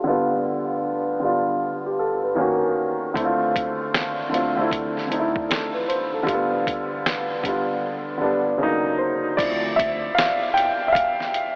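A woody, up-front upright piano opens this nostalgic, melancholic lo-fi hip hop fragment, cut from a longer piece: it plays low-pass-filtered seventh chords that cycle through G7, Ebm7 and Dm7 under a filter sweep before taking a solo from 9.4 s. A compressed, pitched-down, muffled sampler-style kit joins at 3.2 s with a thumpy kick, medium-tuned snare, hi-hat and crash in a swung 16th-note feel, and a punchy fretless electric bass with ensemble chorus briefly sounds a low D. The whole dreamy mix is soaked in a huge, lingering reverb and colored with cassette-tape and AM-radio character.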